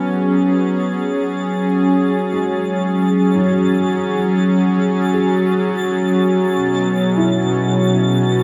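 Serene and spacious, this ambient passage, cut from a longer piece, drifts in open, unmeasured time beneath a huge, wet reverb. A warm analog pad sits up front with smooth, detuned sawtooth chords, its soft attack colored by chorus and tremolo and a bright edge. Alongside it, an analog drone evolves slowly, blending sawtooth and pulse waves with pulse-width modulation and its own chorus. In the background, a felt-muted upright piano fades in with soft, boxy arpeggios, its action noise audible and its notes trailed by delay. High above, a twinkling granular texture fades in too, sparkling with an octave-up shimmer and bathed in its own reverb, as the harmony shifts at 6.5 seconds.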